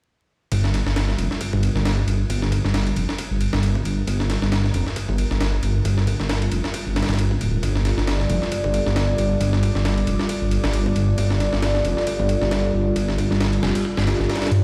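A swung 135 BPM breakbeat groove in G minor kicks off at 0.5 seconds, driven by a compressed, pitched-up sampler kit with a thumpy kick, a high-tuned snare and a ride cymbal, all carrying a tape-warm grit and studio reverb. Alongside it, a thick, menacing detuned saw bass sits up front with a beating, sustained tone under a filter sweep. From 1.2 seconds, a swirling phased analog pad holds a Gm9 chord through phaser, chorus, 12-bit sampler grit, sidechain pumping and its own filter sweep, while vinyl crackle and a large, bare-room reverb give this gritty, energetic excerpt its rough edge.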